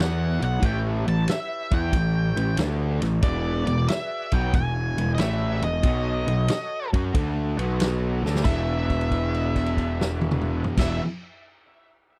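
A gritty, driving blues rock and southern rock excerpt at 92 BPM with a swung feel in E mixolydian opens with all five parts together: a growly fuzz bass and a tight-kicked vintage kit with dark cymbals up front, a double-tracked fuzz guitar riff, a dark octave-fuzz lead melody and a very quiet overdriven organ on slow rotary, moving through B7, A7 and E7 before a drum fill at 8.1 seconds leads into a held note from 8.5 seconds in a dry, close 1970s-style sound.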